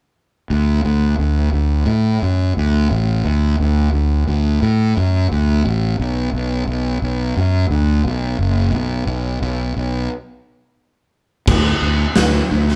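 A round, overdriven fuzz bass, played with the fingers, carries this swaggering, sunny classic rock excerpt in D major at 87 BPM. It plays alone through the opening, spanning its low register, until a break at 10.1 s. At 11.5 s a big acoustic rock kit enters with a fat snare, punchy kick, hi-hat and crash, up front in a bright stone room that gives the live band a moderate, roomy reverb.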